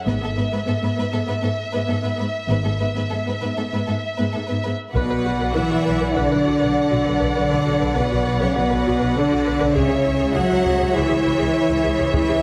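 Epic and heroic, this cinematic orchestral film-score excerpt moves at 100 BPM in B dorian, building up over its first 5 seconds as a warm, vibrato-rich violin section carries the melody above a bright, focused second violin line, expressive viola accompaniment with portamento, and a lush, distant bass foundation of cellos and double basses. Around 5 seconds a dark, roomy French horn section enters with sustained chords and a heavy-sticked taiko ensemble strikes in, the drums returning at 9.8 seconds as the harmony moves from Bm to C#m. The whole sits in a wet scoring-stage reverb with a heavily compressed, radio-like sound.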